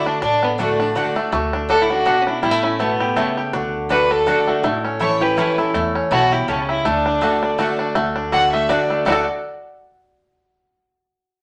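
Bluegrass in D major at 163 BPM, a rustic, joyful waltz-time excerpt swinging in 3/4, with a twangy fingerpicked banjo and a clear, smooth bowed fiddle up front sharing the melody. Beneath them a full-bodied dreadnought guitar picks the accompaniment with audible finger squeak, a bright double-strung mandolin adds stabs from 0.6 seconds, a very quiet nasal resonator guitar traces a second line with slide, and a thumpy gut-string upright bass enters at 0.2 seconds. The studio reverb is wet, and the chords move between D and A.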